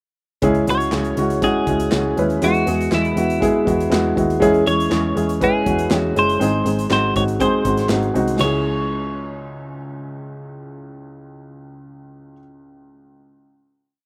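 Piano-driven pop with a bittersweet, driving mood, built on a woody, slightly detuned upright piano played up front in close-voiced eighth-note chords, under a clean, compressed twelve-string electric guitar that carries a motif-based melody in song-like phrases. A dark, round, foam-muted picked bass pushes steady eighth notes, and a punchy acoustic kit with a pumping room sound adds a pop backbeat of snare layered with handclaps, plus hi-hat and crash, until the drums stop at 8.5 seconds. The short verse resolves onto a final chord at 8.4 seconds, which the guitar and bass sustain along with the piano until about 12.4 seconds, after which the piano rings on alone until 14.1 seconds in a dry, close sound.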